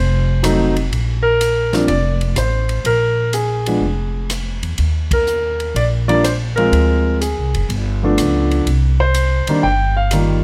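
Swinging eighth notes in 4/4 drive this playful jazz piano trio excerpt, where a deep, natural concert grand carries the melody up front over a woody, thumpy pizzicato upright bass on gut strings, while an airy, polished drum kit with a punchy kick and medium-tuned snare joins at 0.4 s and the band hits a shared accent at 5.0 s, all captured with close, detailed microphones and light reverb.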